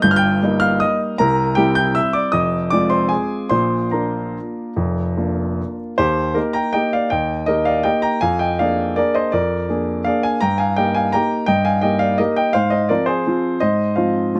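Classical piano waltz in Eb major, graceful and elegant, moving in 3/4 with a rubato feel between 140 and 177 BPM, a solo baby grand piano with a present, polished, up-front tone spanning F1 to G6 plays through a short cut from a longer piece, captured by close, detailed microphones with little reverb, its opening phrase moving from Eb/G through C7 and Fm7 to Bb before a new section at 6.0 seconds turns through Eb, Bb7/F, Eb/G and Fm/Ab until 14.4 seconds.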